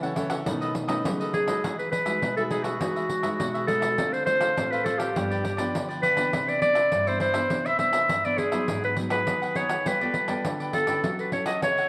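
A straight 4/4 pulse at 102 BPM drives this festive, lively samba and choro passage, cut from a longer piece, with a jingly, compressed, saturated pandeiro running throughout. A crisp, picked cavaquinho and a full-bodied, fingerpicked nylon-string guitar in classical style carry the accompaniment from start to finish, the guitar's finger squeaks audible under its warm acoustic tone. A mellow, breathy trombone with light vibrato sits close-miked in the background as a second line only through the opening 1.6 seconds. The breathy clarinet enters at 1.3 seconds and takes the melody up front, its clear, vintage jazz-style tone shaded with vibrato. The harmony moves through rich chords such as Emaj9, Dm7, G7, Cmaj9 and G9, and a wet plate reverb with a 2.5 second decay gives the sound a lush, roomy halo.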